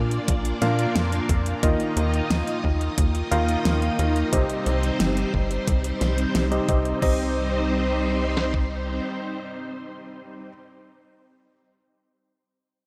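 Synthwave at 89 BPM in C minor, this short cut from a longer piece feels driving and nocturnal, set in a dreamy mix soaked in plate reverb. A lush, vintage string machine holds sustained chords with ensemble chorus, 12-bit sampler grit and sidechain pumping, while an electric grand piano with a clangy low end plays stabs through a low-pass filter and diffuse ambient delay, a filter sweep running across it for the first 7.0 seconds. Underneath, a tight, punchy sequencer bass mixing sawtooth and square waves gives plucky, decaying notes until 9.0 seconds. Two drum parts share the beat: a thumpy, clean 12-bit drum machine supplies kick and snare, and an overdriven pop kit adds a fat snare, metallic hats and crash until 7.2 seconds. The harmony moves from Bb through Ebsus2 to Cm, and a second section begins at 7.0 seconds.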